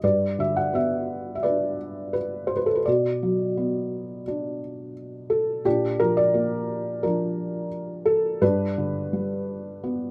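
A felt-muted upright piano, soft, dark and intimate with short sustain and sitting up front in a moderate studio ambience, plays a lyrical, hopeful classical solo in G major at 86 BPM in 4/4 with a rubato feel, moving from G to B minor at 2.9 seconds and a B-flat chord at 5.7 seconds before returning to G at 8.4 seconds in this brief passage cut from a longer piece.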